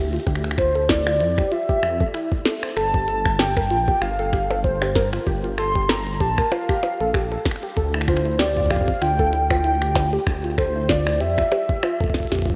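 A rough home-demo mix, set in a lush hall reverb, frames this intricate, cerebral IDM fragment cut from a longer piece, with a swung sixteenth-note feel moving from Dmadd9 to Gm9 and back. A dusty, lo-fi pluck runs arpeggios through chorus, shimmer reverb and delay over a deep, rumbling detuned saw bass, while a glitchy kit of finger snaps, clicky hats, percussion blips and a tiny snare sits beside a gritty, overdriven electronic kick. From 0.6 s a nostalgic, mellow lead carries the melody with tremolo, vibrato and subtle chorus, and a drum fill arrives at 12.1 s.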